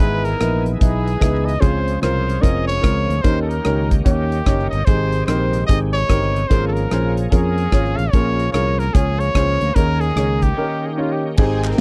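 Swung eighths at 148 BPM in 4/4 drive this jubilant, uplifting uptempo gospel excerpt with a dry, close 1970s-style studio sound, where a clear trumpet with vibrato carries the melody over a woody upright piano with audible action noise, a shouting, lightly overdriven tonewheel organ with slow rotary speaker and chorus vibrato set in the background, a round, punchy fingered electric bass and a tight, polished drum kit entering at 0.3 seconds, before a lush bowed string section takes up the melody at 11.4 seconds and crisp group handclaps sound at 11.6 seconds.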